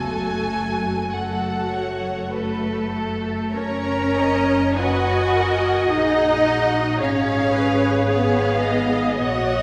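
A slow, solemn romantic movement for string orchestra in a rubato triple metre opens with the full ensemble of violin sections carrying a yearning melody and a lush, close second line, bowed violas in accompaniment, focused cellos and smooth-topped double basses beneath, all with vibrato, shifting from minor to major at 3.5 seconds and ringing in a reverberant concert hall under vinyl crackle in this short fragment of a longer piece.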